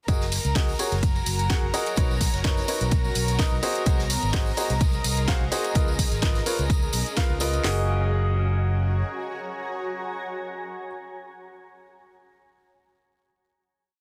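A punchy, overdriven house drum kit leads this short, joyful piano house piece at 127 BPM in F# major, with a four-on-the-floor kick, cracking snare and bright open hats up front, and a lighter layered kit adding closed hats, rim click and backbeat. Beneath them, an acoustic small-room country kit plays a looped breakbeat with edits far in the background, while a tambourine sits softly behind, all on a 16th-note swing that gives the groove a feel-good lilt. A growly, amped fingered electric bass drives a dotted-rhythm line, and a clear, woody upright piano plays a close-voiced rhythmic chord riff through a low-pass filter and dub echo. A soft-bowed symphonic violin section holds pure, floating high chords, and from 1.0 seconds a cloudy granular pad drifts in with evolving, blurred, detuned tones, the strings, bass, piano and pad all pumping under sidechain. The chords move from F#69 through Bmaj9, G#7 and C#13 before the groove gives way at 7.6 seconds to a final F#69 chord, which the bass, piano and pad carry, the bass dropping out at 9.0 seconds and the pad ringing on to 11.1 seconds in a dense, heavily limited mix with light small-room reverb.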